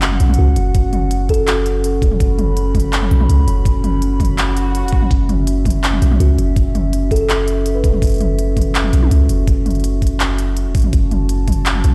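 Heard as if through a big sound system in a bare stone room, this tense, heavy half-time drum and bass cut at 165 BPM in F# minor opens with a dark, detuned analog pad pumping under chorus and a deep, sine-like 808-style bass sitting up front. An overdriven electronic drum kit with crisp hats, handclaps and toms plays throughout, joined at 0.7 seconds by a knocking, tape-warm electronic kick. A woody, hollow kalimba melody rings through delay in two short phrases, the first starting at 0.4 seconds, and a brief electronic swell enters at 4.5 seconds.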